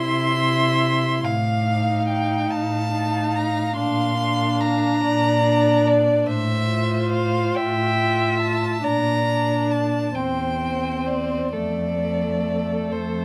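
In a rubato 12/8 at roughly 43-48 BPM in dotted quarters, this tender, slow romantic movement for muted string quartet in F major unfolds over 13.2 seconds of a longer piece. The first violin carries the melody up front with a soft attack and vibrato, while the second violin's darker line adds portamento. The close, veiled viola fills the accompaniment and the cello anchors the bass with a smooth top. The harmony moves from C through F7/A and Bb to a settled F, with moderate studio reverb.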